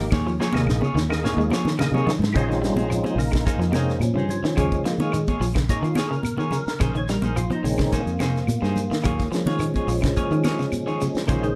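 A tight funk kit with a high-tuned snare opens on a drum fill while a fat, up-front percussive tonewheel organ with key click, slow rotary speaker and chorus vibrato takes a solo from 2.3 seconds in this hypnotic, driving 107 BPM afrobeat cut, over a round foam-muted fingered bass, twangy slightly broken-up guitar arpeggios, clean tremolo guitar stabs, and background grainy shekere, woody claves and bright hard-hand congas, all alternating between Eb9sus4 and Bbm11 in a moderate club ambience with lossy compression artefacts.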